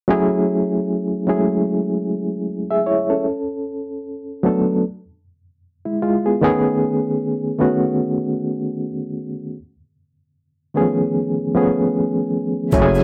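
Melancholic and nostalgic, this lo-fi hip hop excerpt at 76 BPM with a swung 16th feel in F# dorian opens with a reedy electric piano alone from 0.1 s, its fast tremolo and cassette-tape coloring up front over F#m9, Bm7 and Amaj9#11 chords in a small, wet room, until at 12.7 s a rich bowed string section, a woody pizzicato upright bass with transformer saturation, a gritty pitched-down sampler-style boom bap kit with a thumpy kick and medium-tuned snare, and a faint grainy egg shaker all enter just before the cut.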